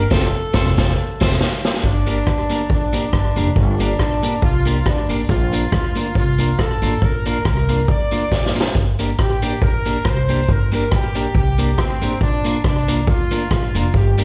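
A punchy, tight horn section carries the melody in this driving, energetic ska excerpt, its bright vintage tone coloured by tube saturation and a slapback echo. The tune sits in G minor at 139 BPM in 4/4, with a light swing on the eighth notes, and the band is heard live through a club PA with a touch of room reverb. The street-band drum kit sits up front with a boomy kick, a medium-tuned snare, rim clicks, hi-hat, crash and dark, rolled-off cymbals, plus its own slapback echo. It opens with a drum fill and a band accent over an F chord before settling into a Gm and Bb progression at 1.8 seconds, with a second fill at 8.3 seconds. Underneath, a woody pizzicato upright bass anchors the low end while a compressed, picked electric guitar at the edge of break-up fills out the accompaniment.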